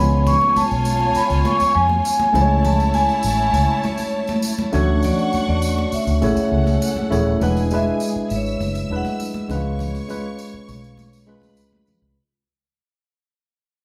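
A ringing vibraphone played with soft mallets carries the melody through a slow motor vibrato in this lush, romantic 1970s-style soul cut at 101 BPM, over a worn, slightly out-of-tune tine electric piano heard through its built-in speakers, a dark, foam-muted, round and punchy electric bass, a second line from a woody, bowed studio string section, and high-tuned thin-skin congas with a jingly tambourine from 0.3 s, all played live in one room with a wet large studio reverb before fading out from 7.4 s.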